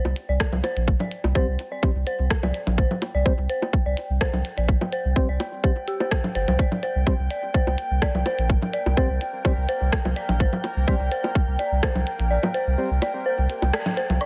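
A tight, overdriven electronic kick drives this quirky, cool minimal techno excerpt until 11.9 seconds, alongside a thick saturated sub bass, clicky overdriven hi-hats and rim clicks, and layered bongos, congas and woodblock through digital delay, while an eerie, inharmonic detuned synth bell riff, hollow organ stabs from 1.4 seconds, a soft breathy pad and, from 7.4 seconds, a bright bubbling stepped-filter texture in the background add chorus-touched color in a light digital ambience.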